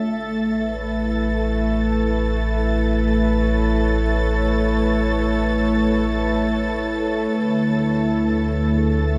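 Ambient in free time and A major, this peaceful, serene excerpt rests on a smooth, detuned analog pad with chorus sitting up front, a round sub bass, a lush bowed violin section, a tense, ring-modulated drone entering at 0.3 seconds in the background with its own reverb, and a very quiet felt-muted upright piano tracing dark, intimate arpeggios, all bathed in an echo-heavy spring-reverb space as the harmony moves from A to D5 at 7.3 seconds.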